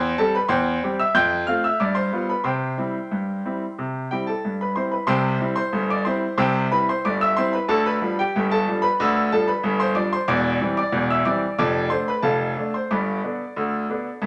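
A straight 2/4 pulse at 92 BPM drives this short, cheerful ragtime piece in C major, cut from a longer performance and tuned slightly low to A4 = 439 Hz. A solo concert grand carries everything from 0.0 to 14.3 s, its brilliant tone sitting up front while deep bass notes reach down to E1 and the upper register extends as high as G6. The playful opening passage moves through C/E, F and G7 before settling on C, and a second passage begins at 5.1 s, returning to G7 and then moving through C/E and Dm/F to land on G as the excerpt breaks off. A wet studio reverb with a short 0.7-second decay lends the piano a sense of room, and the highest frequencies above 10.9 kHz are trimmed away.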